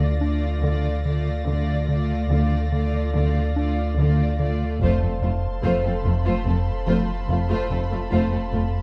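A rubbery, nasal square-wave bass riff drives this ominous, uneasy 72 BPM suspense score excerpt, underpinned by a deep, clean sine sub-bass drone and bowed double bass and cello sections, while a dark, distant violin section carries the expressive melody over a focused second violin line, a smooth viola accompaniment, a high, smooth violin texture and ethereal glass harmonica chords, as the harmony shifts from Dm to F at 4.8 seconds, where a very quiet taiko ensemble adds hard-stick hits until 6.4 seconds within a moderate scoring-stage reverb.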